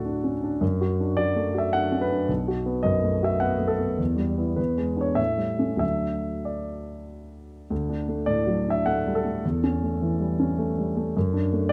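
Passionate and hopeful, this short excerpt from a longer romantic character piece for solo piano moves in a flexible, rubato triple metre around 92-109 BPM in D major. The warm grand piano sits up front, its close, detailed sound set in a moderate recital hall reverb as it spans B1 to F#5. The harmony moves from D through B5, Em, E7 and A7 back to D, then the opening phrase begins again at 7.7 seconds before closing on D/F# at 11.2 seconds.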